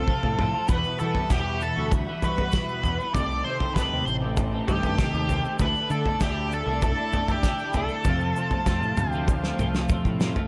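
Trippy and mysterious, this short psychedelic rock passage moves at a straight 98 BPM in 4/4, cut from a longer piece and set in a small room. An octave-fuzz lead guitar carries the melody up front, its dark, distorted tone shaped by wah and slapback echo, while a double-tracked twelve-string electric guitar picks a clean, compressed riff through a rotary speaker. Beneath them, a fingered electric bass growls with round, punchy overdriven fuzz, and a cloth-damped, thuddy drum kit sits up front with a fat snare, tight kick and rolled-off top. Muted, con sordino strings hold veiled, bowed chords with vibrato in the background, joined from 0.7 seconds by a grainy, bright tube shaker. The harmony drifts from F through Emadd9, Cm6 and Dsus2 before returning to F, and a drum fill closes the passage from 9.3 seconds.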